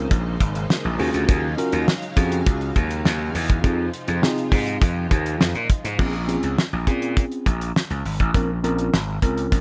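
Funky and slick, this early-eighties boogie funk cut moves at 102 BPM in Bb minor, built on a dry, dark 70s drum kit with a fat snare and tight kick sitting up front beside a growly, overdriven slap bass. A worn, slightly out-of-tune tine electric piano carries the accompaniment through Bbm9, Ebm11 and Fm7, while a shimmering string machine with ensemble chorus holds slow-attack violin chords in the background until 6.0 seconds. The close, nearly reverb-free sound keeps the punchy low end and the piano's clean tone in sharp focus.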